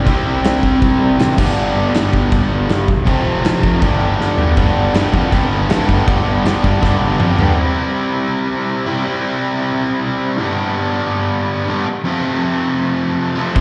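Two picked electric guitars open this upbeat, rebellious punk rock excerpt in C major at 160 BPM, a bright, compressed, up-front distorted guitar and a biting overdriven one in the background, both with slapback echo, alongside a growly, fuzz-drenched picked bass, while a loose, pumping small-room drum kit of kick, snare, toms and crash, with a tight kick and gritty sampler texture, rolls through two fills before dropping out with the bass and second guitar near 7.5 seconds, leaving the distorted guitar alone until the full band returns for a final hit at 13.6 seconds, all heard as if through a venue PA onto cassette.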